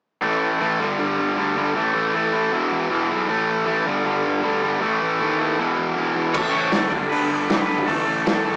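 A rough rehearsal-room recording with saturation, small-speaker tone and moderate reverb frames this rowdy, energetic punk rock excerpt at 157 BPM in straight 4/4, as a bright, overdriven stack guitar sits up front with a tight distorted guitar, both picking a riff over A5, G5 and E5 power chords above a growly fuzz-picked electric bass. At 6.3 seconds the tight distorted guitar drops out, and a raw garage drum kit arrives with punchy kick, medium-tuned snare, hi-hat and crash, gritty and mid-forward with a rolled-off top. Alongside the drums, a lightly driven, twangy, compressed lead guitar plays a slightly broken-up melody in the background.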